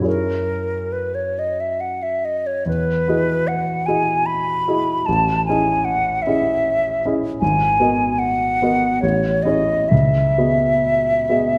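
Mysterious and hazy, this impressionist classical duo drifts in a rubato triple metre, with a hollow, airy concert flute carrying the melody in vibrato-tinged, tongued phrases from 0.1 seconds. Beneath it, a smooth, vintage-sounding grand piano with short sustain supplies the accompaniment, moving through lush extended harmonies such as Emaj9, Amaj7#11 and C#m11. Both instruments sit up front within a wet recital hall reverb in this fragment of a longer piece.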